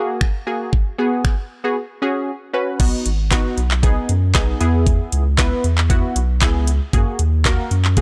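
A punchy, detuned sawtooth polysynth comp with a filter pluck, chorus and sidechain pumping opens this euphoric, carefree dance-pop excerpt in B major at 116 BPM, joined at 0.2 seconds by a smooth, electronic R&B kit of knocking kick, woody snare, metallic hats, snaps, claps and crash. After a brief break from 1.8 seconds, a deep, thick, saturated sub bass with a fast attack and its own sidechain pumping enters at 2.8 seconds as the chords move from B to E and back to F#add9. The sound is dry and gritty with transformer saturation, and every part sits up front.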